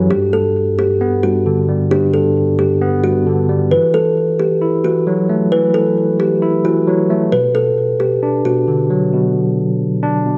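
A moderate recital-hall reverb and a studio ambience surround this short, eerie hip hop fragment, cut from a longer piece. It moves at 133 BPM in 4/4 with a brooding half-time feel. A kalimba carries the melody up front, its thumb-plucked tones woody, dark and ringing, softened further by a low-pass filter. Beneath it, a clean tine electric piano plays the accompaniment through its built-in speakers, also up front and low-pass filtered, shifting from Gadd9 to Esus24. At 7.3 seconds the harmony turns to B minor, and the kalimba stops at 9.1 seconds, leaving the electric piano to sound on until 10.4 seconds.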